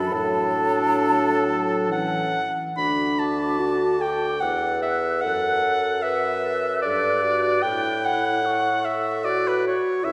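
Classical slow romantic movement for wind quintet in D major, warm and lyrical, flowing in 3/4 at around 66-78 BPM with a free rubato feel, heard as a brief passage cut from a longer piece. An airy, hollow flute carries the melody with vibrato from the background, while a close, up-front oboe with light vibrato sings a warm second line above a dark, soft-attacked French horn, a smooth-topped clarinet entering at 0.1 s, and a mellow bassoon bass. A wet concert-hall reverb surrounds the ensemble, and the music settles into a new phrase at 2.8 s.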